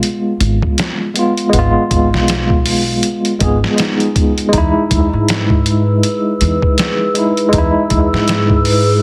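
Cinematic and hypnotic, this trip hop excerpt moves at 80 BPM in 4/4 with a swung sixteenth feel, shifting from Abm6 to Emaj7 at 4.5 seconds. A bright, clean tine electric piano sits up front with tremolo and tape echo, over a gritty, pitched-down sampler-style drum kit with a thumpy kick and medium-tuned snare, while a woody, dark pizzicato upright bass with tube saturation enters at 0.4 seconds. A warbling, nostalgic lo-fi pad with chorus and slow attack arrives at 5.0 seconds, all set in light digital ambience and squeezed into a heavily compressed, radio-like sound.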